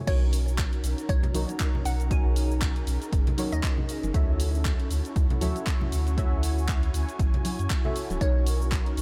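A punchy, layered electronic kick drives this soulful, relaxed deep house excerpt at 118 BPM in B major, where a deep sub bass with octave, swung hi-hats, claps, shaker and crash, soft background congas from 1.1 s, and a glassy wavetable pluck melody float over sidechain-pumped chords moving from Bmaj9 to Dmaj9 at 4.1 s, carried by a smooth analog pad, dark detuned chord stabs through phaser and diffuse delay, and a warbling lo-fi tape-like pad.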